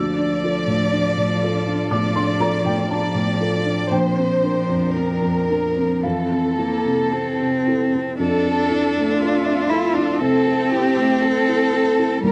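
A slow, rubato 4/4 pulse around 55-61 BPM carries this hopeful, tender neoclassical excerpt in F major, where a vibrato-rich chamber violin section sings the melody over a focused solo cello second line and a soft, boxy felt-muted upright piano, with a bowed string section holding sustained chords in the background through Dm, Bbadd9 and Fmaj7, all captured in a dry, close 1970s-style studio sound with light reverb.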